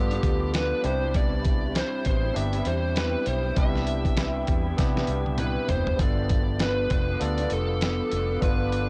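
A 99 BPM groove in 4/4 swings its sixteenths, driven by a lo-fi sampler-style drum kit whose thumpy kick, medium-tuned snare, hi-hat and toms sit up front, pitched down, compressed and muffled, with a drum fill from 4.8 to 6.0 seconds. This short excerpt of hazy, dreamy indie and bedroom pop in C major moves from G7 to Cmaj7 and back to G7 at 6.0 seconds. A dark, round, foam-muted fingered electric bass anchors the low end with transformer saturation. A barky tine electric piano through a combo amp adds bright, clean accompaniment coloured by cassette tape, while an electric guitar through a small old amp plays slightly broken-up picked parts in the background, treated with analog chorus and vibrato. An overdriven slide guitar played with fingerpicks carries the melody through analog chorus and tape echo, and an ethereal, airy pad of detuned sawtooth and triangle unison voices, with a sub octave and slow attack, holds mellow chords from 0.1 seconds with ensemble chorus and its own reverb. 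The overall sound is dry and gritty, with the character of a hardware recording on cassette tape.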